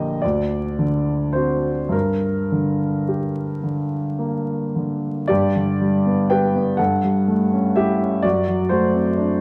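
A slow, rubato 6/8 sway at roughly 34-43 BPM in dotted quarters carries this short cut from a melancholic, yearning romantic nocturne for solo piano, moving from D7 to G minor before brightening into G major at 5.3 s and passing through A7/G and D7/F#. The baby grand sounds clear, open and up front, ranging from Bb1 to G5, with long sustain. Close, detailed microphones sit within a moderate recital-hall reverb, and vinyl crackle adds an aged patina.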